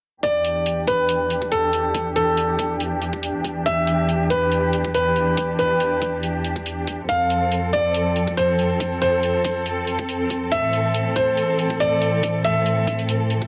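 Aggressive and heavy, this wobble dubstep excerpt moves at 140 BPM in a swung, half-time 4/4 feel, rooted in E phrygian and passing through Em7, F and Am. A clear, intimate concert grand piano carries the melody up front with audible action noise and delay, while a dark, veiled con sordino string section holds bowed chords with vibrato, sidechain pumping and a filter sweep. Overdriven electronic drums sit beneath, with bright layered hi-hats and a knocking kick set back in the mix, all inside a plate reverb and small room ambience.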